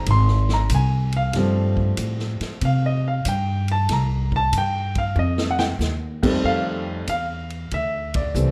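An intimate concert grand piano leads this relaxed, sophisticated jazz trio cut, up front and natural, with audible action noise and a deep low end as it carries the melody in a solo passage from the start to 6.4 seconds. A woody upright bass, plucked on steel strings and also close up, anchors the harmony beneath it. The big-band drum kit sits farther back in a roomy studio space, its punchy kick, medium-tuned snare, hi-hat, ride and crash softened by a rolled-off top. The swung eighth notes give the piece an easy, elegant lilt as the chords move from Ab through G9sus4 and F7(no3) to a settling Fmaj7. A drum fill arrives at 5.2 seconds ahead of the next section, and the trio lands a band accent at 8.0 seconds, all wrapped in light reverb as a short cut from a longer performance.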